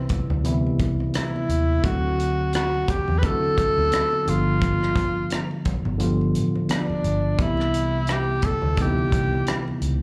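Lush and smooth, this short cut from a longer piece is 1970s-style soul in C major at a relaxed 86 BPM in 4/4, with a gentle swing on the sixteenths. A breathy tenor saxophone carries the melody up front, intimate and whispered, with vibrato, scooped notes, a soft attack and a slapback echo, and it falls silent at 9.7 seconds. Beneath it, a worn, slightly out-of-tune tine electric piano plays clean accompaniment through a combo amp, while a vintage fingered electric bass sits low with a dark, round, foam-muted punch. A tight funk drum kit of hi-hat, kick drum and rim click sounds natural and close, and very quiet, band-limited congas add a thin, bright skin tone in the background. The harmony moves from Cmaj7 to D7 and G7 before returning to Cmaj7, all heard as a live gig through the venue's PA with club reverb and small room ambience.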